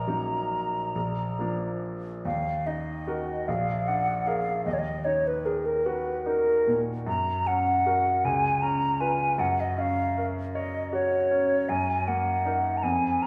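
Melancholic and solemn, this romantic classical duo for flute and grand piano unfolds in Eb minor at a slow 51 beats per minute, counted in dotted quarters, in 6/8 with uneven, rubato phrasing. The concert flute carries the melody between Ab4 and Bb5, its tone airy and hollow with vibrato and a crisp attack, close-miked and sitting up front. Beneath it, a baby grand piano supplies the accompaniment from Bb1 up to Db5, brilliant and bright, with a natural, long sustain, also placed forward in the mix. The harmony settles around Eb minor and Bb before a new passage begins at 2.2 seconds, shifting at 7.1 seconds toward Gb and Db7 and then turning back to Eb minor over Gb. A wet recital hall reverb with a 1.4-second decay surrounds the pair, as though heard from further back in the room, and this short passage is cut from a longer piece.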